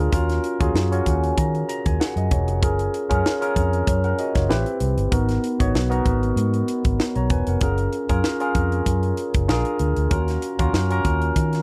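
Upbeat and urban, this polished 1980s jazz-funk pop excerpt swings lightly in 4/4, with a barky, lightly overdriven tine electric piano sitting up front through a combo amp with lush chorus and playing a fill from 0.7 to 2.6 seconds over chords moving from D#m7 through F#maj7, Am7 and A#7, while a dark, round, punchy foam-muted fingered bass and a crisp fusion drum kit with a high-tuned snare, tight kick and hi-hat complete the dry, close 1970s-style studio sound.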